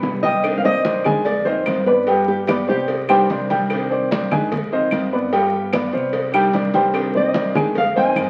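Crackling like a very old 78 rpm record and bathed in wet studio reverb, this danceable Cuban son and guajira in C minor at 148 BPM sets a full-bodied, thumb-plucked nylon-string guitar melody up front, heard from 0.2 to 3.5 seconds and again from 6.8 seconds, beside a dark, worn grand piano playing boxy arpeggios with audible action noise, over a fingerpicked flamenco guitar with finger squeak, a growly pizzicato upright bass, bright, thin-skinned congas, distant round bongos and cowbell, and woody claves, all moving through Cmadd9, Fm7 and G7.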